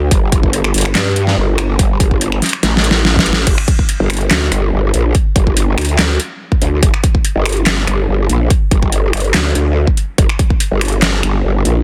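A half-time 4/4 groove drives this heavy wobble dubstep cut, which sounds menacing from its first moment and is taken from a longer piece. A punchy, overdriven electronic kick sits up front, while a layered dubstep kit adds a deep snare, metallic hi-hats, finger snaps, handclaps and crash cymbal, all with its own overdrive and the close feel of a small room. Filling the low end from G1 to G2, the growl bass is an aggressive, wobbling, detuned unison sound shaped by a formant filter, with a fast attack, long sustain, saturation, chorus and overdrive. The whole stretch plays as a drop, and a drum fill from 2.6 to 3.5 seconds leads into a second pass of the same section. The mix is dry and up front, finished with a dense, heavily limited modern master.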